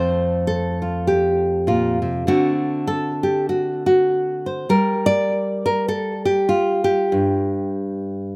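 Hopeful and nostalgic, this short folk excerpt features a solo fingerpicked nylon-string guitar with fresh strings and a classical touch, played up front at 99 BPM in 4/4 with a gentle swing, moving from F to D7 at 2.3 seconds and Gm at 4.7 seconds over a range of F2 to D5, its dry outdoor sound marked only by a slapback echo on the guitar.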